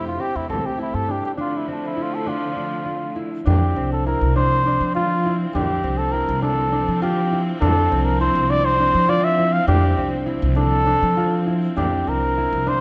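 This contemporary instrumental chamber piece moves in an uneven 7/8 meter at 203 BPM counted in eighths, with a straight feel in F major and a shimmering, hopeful mood. A mellow flugelhorn carries the solo melody up front with pop-style vibrato and a punchy attack. Beside it, a pizzicato upright bass on gut strings sounds woody and thumpy. A thumb-plucked concert harp rings out arpeggios, while a close, focused studio string section holds lush bowed chords with vibrato. A deep frame drum enters at 0.5 s, very quiet and distant as if in a large room. The harmony moves from Am7 to F6 before the music shifts at 3.5 s onto an F5 chord, all set in a moderate scoring-stage reverb, and the passage is cut from a longer piece.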